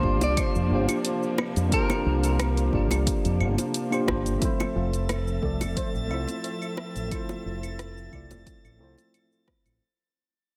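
Lightly reverberant, this short excerpt of sunny, relaxed sunset chillout moves at 89 BPM in F major, with a gentle swing on the sixteenths. A punchy, overdriven electronic kick and a layered deep house kit of claves, hi-hat, rim click and shaker set the groove. Round, low-tuned bongos played with hard hands sit close and dry in the background. Up front, a fingered electric bass with an envelope filter anchors the low end, while a worn, slightly out-of-tune tine electric piano, lightly overdriven and treated with digital delay, carries the accompaniment over dark, intimate bowed strings with soft attack and light vibrato. A clean, picked electric guitar with spring reverb and delay states the melody until 3.7 seconds. At 4.4 seconds the harmony shifts from C9sus4 to Fmaj7 and the recording begins to fade, as a shimmering, airy steel pan enters with filtered arpeggios under a filter sweep, joined shortly after by a calm, glassy drifting texture of sine-like harmonics with chorus.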